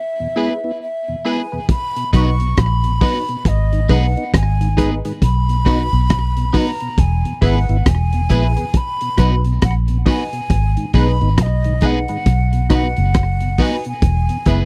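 Up front, a crunchy, saturated breakbeat kit of kick, hi-hat and rim click arrives at 1.7 seconds, joined at 2.1 seconds by a round, foam-muted fingered bass, anchoring a sunny, uplifting roots reggae groove at 68 BPM in B major with a swung sixteenth feel, cut from a longer piece. A breathy, hollow flute carries the melody through tape echo from the start, over a mellow tonewheel organ turning on a slow rotary speaker in the background, a twangy, slightly broken-up electric guitar and nasal, detuned dub chord stabs with chorus, as the chords cycle through E, B and G#m. The sound is dry and close, in the manner of a 1970s studio recording, with little reverb.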